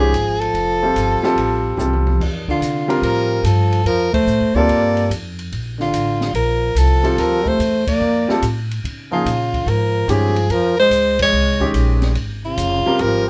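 A breathy, close-miked soprano saxophone carries the melody up front, its vibrato floating over a hypnotic, spiritual modal jazz groove in a swung 4/4. Beneath it, a dark trombone with scooped notes and a smooth top sings a second line. A natural-sounding baby grand piano with short sustain sits forward in the accompaniment, and a woody, thumpy pizzicato upright bass on steel strings anchors the low end. The acoustic drum kit sits low in the mix, a small-room set with dusky cymbals, a high-tuned snare and a boomy kick, and its fill closes the brief opening section at 2.2 seconds. The harmony then moves from Dbmaj9 and Fadd9 to a long stretch on Bbmaj9 before returning to Dbmaj9, with full-band accents punctuating the passage. Light reverb gives the feel of a group playing live in one room, and the music is cut from a longer performance.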